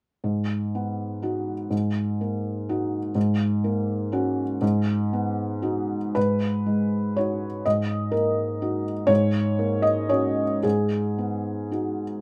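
A felt-muted upright piano opens at 0.2 seconds, playing alone in this short neoclassical minimalist passage cut from a longer piece. Its tone is soft and intimate, with thick felt dulling the hammers and the mechanical action noise clearly audible, the instrument placed up front under a light reverb. The mood is reflective and melancholic, set in G# minor in 3/4 at roughly 110-130 BPM, with a rubato feel that lets the time breathe. The harmony circles over a G# foundation, moving from G#m7 through D#m/G#, F#add9/G# and B6/G#. At 6.2 seconds a new section begins and the same four-chord cycle returns, carrying the piano through to its close at 12.2 seconds.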